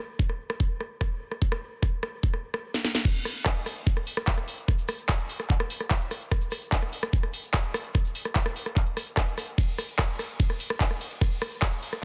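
A knocking, up-front electronic kick opens this intense, driving trance excerpt at 147 BPM in a straight 4/4, joined at once by a layered electronic drum kit with a cracking snare, metallic hats, handclaps, rim clicks, ride and crash, both tape-toned and re-recorded in a small room, before a drum fill at 2.7 s leads into the drop at 3.0 s, where a grainy, mellow tube shaker enters close but in the background of a dry, dense, heavily limited mix.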